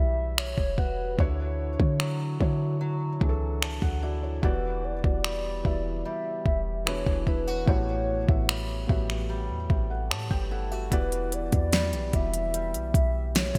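A straight 4/4 groove of finger snaps, hi-hat, a soft kick and a fat, gated-reverb snare sits up front from 0.4 seconds in this longing, sensual contemporary R&B excerpt, under a deep, boomy sine-toned 808-style bass, a felt-muted upright piano with audible action noise, fingerpicked acoustic archtop guitar arpeggios with finger squeak and subtle chorus and delay, and a hollow, woody clarinet-like synth lead carrying the melody with vibrato, chorus and delay, all moving through lush ninth and thirteenth chords with light reverb and bright 1980s-style digital production.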